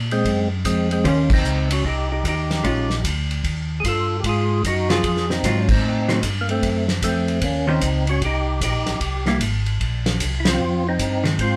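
A percussive tonewheel organ carries the melody up front, its fat, lightly overdriven tone shimmering through a slow rotary speaker with third-harmonic percussion giving each note a bright click. Beneath it, a second tonewheel organ supplies the bass line in a round, dark, clean voice, with chorus vibrato and its rotary speaker stopped. This is a greasy, soulful soul jazz organ trio groove in 4/4 with a swung eighth-note feel, cut from a longer piece. An acoustic soul drum kit sits up front with a fat snare, tight kick and dark cymbals across hi-hat, ride and crash, its rolled-off top keeping the sound mellow. From 1.0 seconds a vintage hollow-body electric guitar adds picked, compressed, dark accompaniment, and the band hits together on accents at 1.2, 5.6 and 10.4 seconds. The players share one room with moderate studio reverb, giving the whole take a close, live feel over rich extended harmonies.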